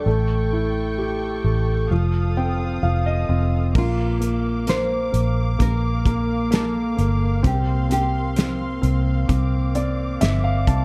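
A dark, warm small-room sound frames this emotional, melancholic pop ballad at 65 BPM in 4/4, cut from a longer piece. A woody, fingerpicked nylon-string guitar with old strings carries the melody over clear grand piano chords with audible action noise and fills, lush bowed strings with smooth vibrato, and a round, foam-muted electric bass sitting up front, moving through A7, F7, Bb and C7sus4. A punchy acoustic drum kit with a pumping room sound joins at 3.7 s with kick, medium-tuned snare, hi-hat and crash, and the guitar stops at 9.7 s while a piano fill carries the passage out.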